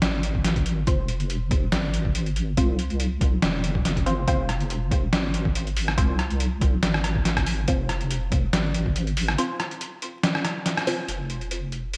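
A half-time 4/4 groove at 141 BPM with a slight 16th-note swing drives this brooding, heavy deep dubstep excerpt in F minor. A muffled, overdriven sampler-style kit of hi-hat, rim click and medium-tuned snare with gated reverb sits up front beside a deep, warm wobble bass with chorus, while a thumpy, pitched-down electronic kick drops out at 8.9 s and a muted, detuned dub chord stab with phaser, lush chorus and dub echo evolves through filter sweeps from 0.9 s. A band accent lands at 10.8 s before a moody analog pad creeps in barely audibly at 11.1 s, all framed by light reverb, vinyl crackle and a bright 1980s-style digital sheen.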